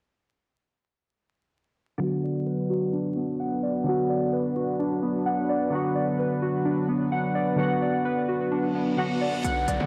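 Brooding and hard-hitting, this half-time trap excerpt opens at 2.0 seconds on a B minor chord with glassy digital keys under chorus and phaser, a smooth analog pad holding sustained chords, and warbling lo-fi synth keys playing nostalgic arpeggios through tape echo, the keys drifting under a filter sweep. A reverse cymbal and downlifter enter at 8.7 seconds, and at 9.4 seconds a distorted, heavy 808-style bass hits up front alongside crisp electronic hi-hats. The sound is dry and gritty, with transformer saturation, vinyl crackle and a light digital ambience.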